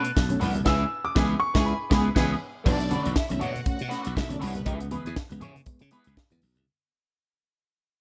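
A glassy, growly slap bass drives this driving, glamorous disco excerpt at 120 BPM with a light 16th-note swing, sitting up front beside a tight, dry funk kit with bright cymbals and a high-tuned snare. A clear grand piano states a brief high melody that ends at 2.4 seconds, while a lush bowed string section carries a second line until 4.6 seconds, over a slightly broken-up, picked electric guitar with wah and a reedy electric piano with fast tremolo in the background. Soft low-tuned congas and a grainy tube shaker add very quiet percussion under light reverb over Bm7 and C#m7 chords, as the band accents from 0.7 to 2.7 seconds, then fades out from 2.7 seconds.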